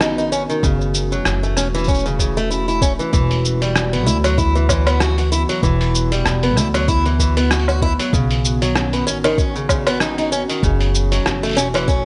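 Swung sixteenths in 4/4 carry this delicate, autumnal folktronica fragment, where a muffled, pitched-down sampler-style kit of hi-hat, rim click, shaker and woodblock sits up front and a soft electronic kick joins at 0.6 s. A boxy, picked acoustic archtop guitar with old strings plays arpeggios through tape echo, a woody pizzicato upright bass holds the low end, and a dark, warbling, nostalgic pad sustains detuned chords with chorus and reverb, moving through Badd9, F#m7 and Esus2. The mix has a lo-fi haze under light reverb and digital ambience, its top end gently rolled off.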